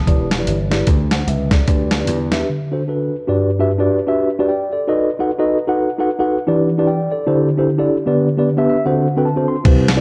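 Uptempo gospel at 151 BPM in G major with a swung 4/4 feel, this uplifting, soulful cut from a longer piece opens on a mellow tine electric piano heard up front. A gritty, pitched-down boom bap sampler-style drum kit with a thumpy kick and a punchy, foam-muted thumbed slap bass supports it, then drops out for a break at 2.5 seconds, leaving the electric piano alone over chords such as Gmaj7, B7 and D9sus4 until it plays a fill and the bass and drums return at 9.7 seconds. A moderate concert hall reverb lends the dark production a roomy glow.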